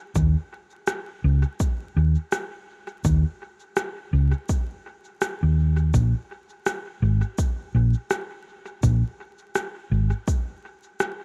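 Ambient dub at 83 BPM in 4/4, with a 58% swing on the sixteenths, this short cut from a longer piece feels spacious and hazy. A dark, round hollow-body short-scale electric bass, played with the fingers and amped, sits up front from 0.2 s, moving between Ab1 and Eb2 before dropping out at 10.1 s. An electronic kick drum, deep, layered and overdriven, with the air of a large room around it, shares the foreground until 10.4 s. Electronic cabasa and rim click, tape-warm and carrying a dub echo, are also close up and hold on alone to the end at 11.2 s, their small-room ambience trailing behind them. The recording is fairly dry overall, with a layer of vinyl crackle lending it a worn, dusty surface.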